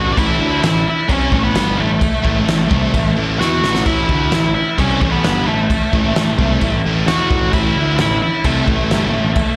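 Heard through a venue's PA at a live gig, this short cut from a longer piece carries a recital-hall reverb around otherwise dry parts. It is quiet-loud alternative rock in a straight 4/4 at 131 BPM, tuned slightly flat to A4 = 436 Hz and opening on an A5 chord, with a bittersweet, anthemic mood. An up-front octave-fuzz lead guitar carries the melody between A3 and F#5 with a dark, distorted edge and slapback echo. Beneath it, a thick, double-tracked fuzz guitar picks a riff with a warm tone and its own slapback echo, while a picked electric bass adds a bright, growly overdrive from G1 to E2. The loose indie drum kit comes in at 0.2 seconds with a fat snare, punchy kick and dark crash cymbals in a pumping room, and a drum fill lands at 3.4 seconds.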